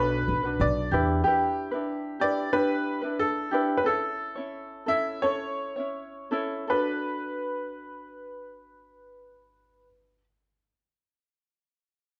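In a straight 4/4 that slows between 1.2 and 6.7 seconds from a pace around 80-94 BPM, this tender, reflective acoustic pop excerpt in B minor sets a bright, slightly detuned upright piano melody over light, thumb-plucked ukulele accompaniment, with a growly pizzicato upright bass heard only until 1.2 seconds, all three up front in a live room with a stone-like reverb as the chords move from Bm7 through Em7 and A back to Bm7.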